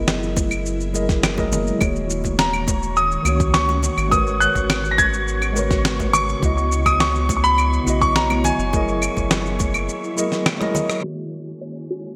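Sunset chillout with a warm, wistful mood, cut from a longer piece and set in a lush hall with a bright 1980s-style digital sheen. A mellow tine electric piano with digital delay carries the accompaniment over an ethereal, airy pad treated with ensemble chorus and phaser, while a round analog bass and a deep, layered electronic kick anchor the low end. A gritty, fat electronic snare sits up front with shaker, claves and rim click under gated reverb, and ringing, hard-handed congas stay in the background. From 2.4 s a clear concert grand piano takes the melody, intimate and polished with audible action noise and long sustain, as a breathy, wind-like tuned noise texture drifts beneath it. After a drum fill, a soft pluck enters at 11.0 s with arpeggios colored by cassette tape and subtle chorus, while a filter sweep moves across the pad.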